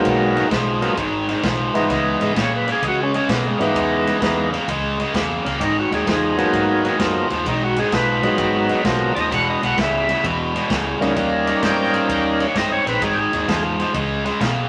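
A gritty, key-clicking tonewheel organ turning through a slow rotary speaker opens this brooding electric blues shuffle alongside a bright, picked overdriven guitar riff, with both sitting up front from the very start. Set in G# minor at 130 BPM in 4/4 with a swing on the eighths, the piece has a mournful weight. A swinging big-band drum kit supplies kick, ride cymbal and a medium-tuned snare with a natural studio-room sound and a punchy kick, while a vintage foam-muted fingered bass adds a dark, round low end. The chords move from G#m7 to C#m7 and back, then through E5 and D#7 before closing on power-chord shapes, with the organ dropping out at 13.6 seconds and the guitar continuing to 14.7 seconds. A moderate studio reverb gives the cut, taken from a longer piece, a sense of shared space.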